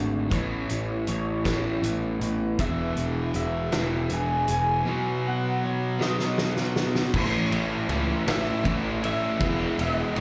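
This bittersweet, anthemic slice of quiet-loud alternative rock, cut from a longer performance, opens with several parts at once in a straight 6/8. A twangy, slightly broken-up electric guitar from a small old amp carries the melody through analog chorus and slapback echo. Beneath it sit a full-bodied jumbo acoustic guitar picking arpeggios in the background with plate reverb, a dark, crunchy overdriven guitar riff, and a growly fuzz bass pushed up front. A loose indie drum kit joins at 0.3 seconds with a fat snare, tight kick and dark cymbals, sounding distant and roomy. At 2.6 seconds a bright, thick fuzz guitar enters with a riff of its own, and after a drum fill the acoustic guitar stops at 7.1 seconds as the harmony moves through Aadd9, E and B before returning to A and E. The whole set is heard as a live club gig through the venue's PA, with club reverb.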